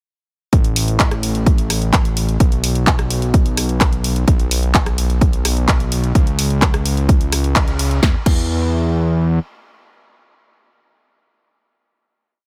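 A punchy, overdriven four-on-the-floor kick, a layered big-room kit of claps, snare, rim clicks, hats and crashes, and a fat, detuned sawtooth bass with sidechain pumping enter together at 0.5 seconds for a triumphant, anthemic festival progressive house drop in digital ambience, marked by a band accent at 7.6 seconds before the drums stop at 8.4 seconds and the saturated bass carries on into the final note.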